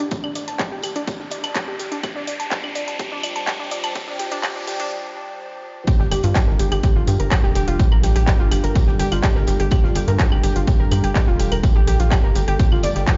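Melodic techno at 125 BPM in a straight 4/4, this melancholic yet driving cut is built around chords moving from A5/G and Fsus2/G to Gm7. A warbling, lo-fi pluck plays detuned arpeggios with chorus and digital delay, while a deep, moody analog pad holds sustained chords in the background, softened by chorus and a phaser. During the opening build-up both synths carry filter sweeps and an electronic riser runs beneath them, leading to a short break at 4.9 seconds. The drop lands at 5.9 seconds, and the tight, punchy sequencer bass enters at 6.0 seconds with a fast-attack filter pluck. A punchy, tape-warm kick sits up front, layered with a techno kit of metallic hats, claves and handclaps, plus a very quiet acoustic kit adding smooth hi-hat, snare and tambourine. The synths, bass and techno kit pump against the kick, and the mix has little reverb beyond a bare stone-room sound, with its top end capped at 7.5 kHz.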